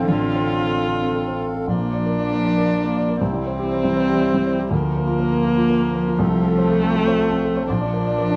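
Neoclassical piano and strings in 3/4, moving with a rubato feel between 113 and 123 BPM, in a short cut from a longer piece that feels longing and fragile. A felt-muted upright piano sits up front as the accompaniment, its soft, mellow, intimate tone spanning a broad range from low bass notes to the upper register. Beside it, a single bowed viola adds accompaniment with a rich, smooth, even sound and vibrato, while a lone cello plays a second line from the background, expressive with vibrato and portamento. A hand-pumped harmonium holds sustained chords, reedy, breathing and airy. The harmony opens on Dm7/A, and after a brief first section a longer second one begins at 1.7 seconds, moving through Bb, C, Bb/D and F/C before returning to Bb. Light reverb and a dark, warm production give the whole a soft glow.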